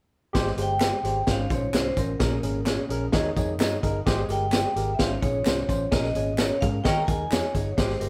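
Recorded live in one studio room with moderate ambience, this joyful, uplifting slice of uptempo 1960s-style soul in Ab major moves at 129 BPM in a straight 4/4. Up front, a gritty, punchy vintage drum kit with a high-tuned snare drives the groove. Beneath it sit a dark, round, foam-muted electric bass and a bright, barky tine electric piano through a combo amp, comping over Abmaj7, Dbmaj7/Ab, Bbm7 and Eb7sus4, while compressed tambourine, tube shaker and group handclaps stay in the background. From 0.6 s, a metallic, ringing vibraphone struck with hard mallets and given slow motor vibrato carries the melody; the band hits an accent from 5.9 s, and a smooth jazz-style horn section makes a fleeting appearance at 6.9 s.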